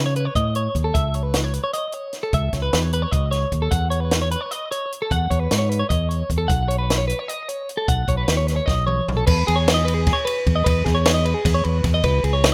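A rough home-demo mix with a dry, close-up sound carries this intricate, wistful snippet of math rock and midwest emo in 7/8. A clean, compressed twelve-string electric guitar picks arpeggios colored by spring reverb and slapback echo, over a warm fingered electric bass and a compact cocktail drum kit, entering at 0.2 seconds, with a punchy kick, high-tuned snare and dark cymbals. A drum fill at 8.7 seconds leads into a new section at 9.3 seconds, where the harmony moves from Emaj7 to C#5.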